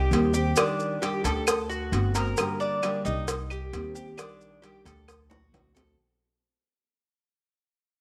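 A home recording on cassette, set in a lush hall reverb, carries this short, fading clip of danceable, sultry Cuban son and guajira, where a bright, metallic Cuban tres picks arpeggios up front over a thumpy pizzicato upright bass and a full-bodied, fingerpicked nylon-string guitar, while round, low-tuned cowbell and bongos, grainy maracas and close, dry claves in the background fill out the percussion before a drum fill at 5.3 seconds.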